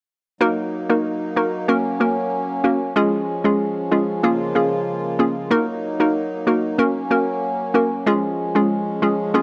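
A straight 4/4 dancehall groove at 94 BPM in Eb minor carries a sultry, bouncy mood through this short cut from a longer piece, as an up-front, hollow square pluck with detuned, ring-modulated tones, a filter sweep, chorus and a fast, decaying attack plays the accompaniment over a reedy, breathing pedal harmonium, also up front, holding sustained chords through Ebm, Gb, Db and Bbm7, the whole set in a moderate plate reverb within a dark, warm production.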